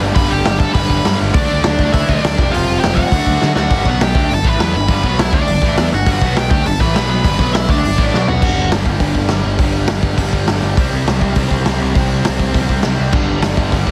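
Rowdy and upbeat, this fragment of a punk rock song charges along at 204 BPM in G major, driven by a gritty, punchy raw garage drum kit set up front with a rolled-off top and a touch of stone-room character, plus a growling, overdriven picked electric bass. Behind them, a tight distorted guitar and a raw garage overdriven guitar play bright picked riffs, while a very quiet, double-tracked cranked stack guitar adds to the riff until 8.4 seconds and returns briefly near the end. A dark, nasal lead guitar with a parked wah carries the melody until 8.7 seconds, with drum fills marking the turns, all in a dry, heavily compressed radio sound.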